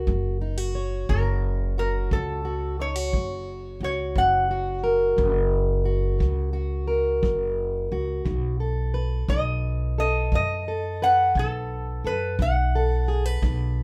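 Gritty and rollicking, this acoustic country blues excerpt rolls along at 58 BPM in 12/8, with a metallic, nasal resonator slide guitar played with fingerpicks carrying the melody up front from 1.1 seconds over a boxy fingerpicked parlour guitar, a woody, thumpy pizzicato upright bass on gut strings, and a punchy kick drum in a small natural room, all under light reverb as the harmony moves from F# to B7 at 8.3 seconds.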